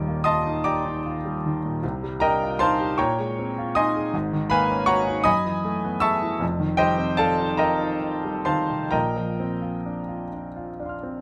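A clear grand piano opens on a hazy Ebmaj9 and drifts through a chain of lush minor eleventh chords before settling on F9sus4 and resolving to Bbadd9 near 8.9 seconds. It is a serene, impressionist classical fragment for solo piano in Bb major and 6/8, moving in free rubato at a slow 42-54 BPM and spanning from deep Eb1 to a bright F6. Close, detailed miking keeps the polished, intimate instrument up front, with long sustain, audible action noise and very little reverb.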